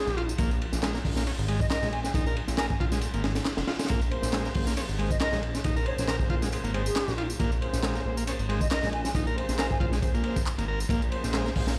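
A swaggering, raw breakbeat groove at 137 BPM in 4/4 with a 55% swing on the sixteenths, sitting on a single Bbm9 chord in Bb minor for this short cut from a longer piece. A crunchy, saturated acoustic drum kit with a high-tuned snare, tight kick, hi-hat and dark ride sits up front beside a fat, detuned sawtooth analog bass with a filter sweep, while dry electronic tambourine and handclaps add an overdriven edge further back. A buzzy vintage combo organ carries the riff through tube saturation and delay, and a hollow, close-miked concert flute with vibrato plays the melody through an AM radio filter and 12-bit sampler grit until 9.8 seconds. A faint reverse cymbal flickers at 3.3 seconds, and from 4.1 seconds a smooth-topped brass ensemble adds delayed stabs in a classical style. The whole mix sounds as if played on a big sound system in a bare stone room, with a light reverb.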